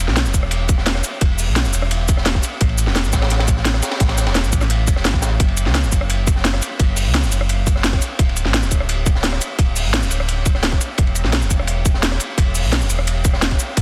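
A straight 4/4 liquid drum and bass groove drives this melancholic, soulful piece, built from a tight electronic kick entering at 0.3 seconds and a layered, up-front drum and bass kit of cracking snare, crisp hats, rim click and cabasa. Beneath them, a crunchy breakbeat kit adds gritty, saturated texture with dark cymbals, a high-tuned snare and a filtered, rolled-off top, while a deep sine sub bass with octave holds full, sustained notes with a fast attack. The dense, heavily limited master sits in a small room ambience.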